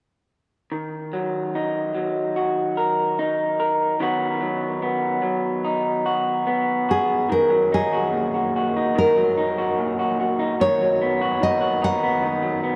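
In a straight 4/4 pulse, this intimate, tender folk-pop ballad opens at 0.7 seconds with a picked electric guitar through a small old amp, its slightly broken-up, compressed, lo-fi tone laying down accompaniment that moves between D#m and B/D#. At 6.9 seconds a fingerpicked nylon-string guitar joins up front with the melody, its full-bodied, deep classical voice sounding warm. A long cathedral reverb places both guitars in a vast, echoing space, and this excerpt is cut from a longer piece.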